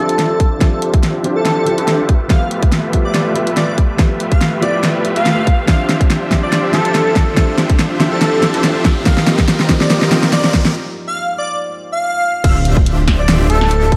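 Bittersweet and dreamy, this future bass excerpt at 142 BPM in a swung half-time feel in D dorian opens with an airy, vibrato-tinged lead melody over a felt-muted upright piano with audible action noise and huge supersaw chords under a low-pass filter sweep, all three pumping with sidechain as an up-front pop kit with a fat snare and an overdriven electronic kick drive the build-up, until a break from 10.8 seconds gives way at 12.4 seconds to a drop marked by a very quiet impact, a punchy unison pluck arpeggio and a thick, dark detuned saw bass.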